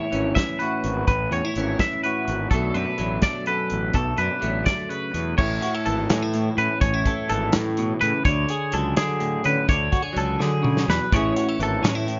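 A twangy, compressed electric guitar picks bright, chorus-tinged arpeggios up front over a second clean guitar's picked accompaniment with analog chorus, a round, punchy fuzz bass and a loose, small-room drum kit with a tight kick, all moving through Amaj7, Bm7 and Dmaj7 in an intricate, wistful math rock and midwest emo passage in A major at 84 BPM in 6/8, with a drum fill at 10.4 seconds in this dry, dark-topped excerpt cut from a longer piece.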